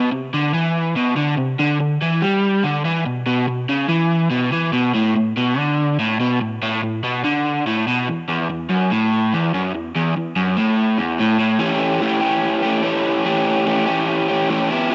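A crunchy, overdriven electric guitar plays alone from the first second, picked and double-tracked up front in a carefree, jangly rock excerpt cut from a longer piece. It moves through suspended chords before a brief chordless moment at 11.4 seconds gives way to an A7 at 11.6 seconds, carrying the passage to its end at 14.9 seconds. A moderate spring reverb surrounds the guitar, and the home cassette recording gives the whole a homespun sound, its top end rolled off.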